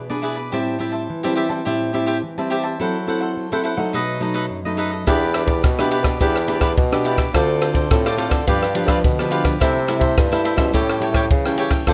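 Festive and sunny, this samba-choro passage cut from a longer piece opens with a dark, fingerpicked classical nylon-string guitar and a crisp, picked cavaquinho up front, joined at 5.1 s by a clear bassoon bass line with light vibrato and a compact cocktail drum kit with a punchy kick, ride cymbal, rim clicks and a rolled-off top, set in a moderate large studio reverb.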